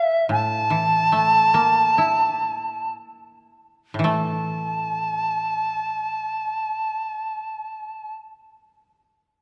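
Rubato in 4/4 at 53-78 BPM and slowing through the first 4.0 seconds, this calm, austere fragment of Japanese chamber music places an airy, reedy shakuhachi melody with vibrato and a crisp, chiffy attack up front, while a mellow, woody koto played with fingerpicks joins at 0.3 seconds as a quieter, lower accompaniment, set in a dark, reverberant concert-hall space.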